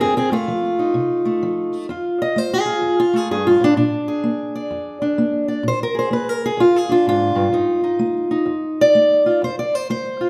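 A swung 4/4 groove drives this rollicking, gritty slice of acoustic country blues, where a lone fingerpicked steel-string parlour guitar, boxy and up front with fresh strings and a touch of finger squeak, moves from F7 to Bb7 at 3.8 seconds and back to F7 at 7.5 seconds inside a lush recital-hall reverb.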